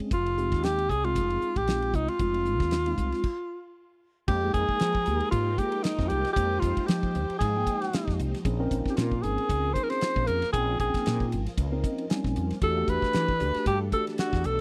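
A swung sixteenth-note groove at 115 BPM in 4/4 drives this funky, slick slice of electric jazz fusion in F minor, cut from a longer piece. The damped 1970s drum kit sits up front with a fat snare, tight kick and dark cymbals across hi-hat, ride and crash, while the fretless electric bass adds a round, woody, punchy low end under a subtle chorus. A bright, forceful alto saxophone carries the jazz melody with vibrato, and a mellow tine electric piano comps through analog chorus, stepping forward with a short fill at 11.6 seconds. After a stop at 3.2 seconds, a phased string machine enters at 4.3 seconds with swirling, slow-attack sawtooth chords set in the background, as the harmony moves from Fm9 and Fm11 to Bbm11 and Em11. The sound is dry and close, in the manner of a 1970s studio session.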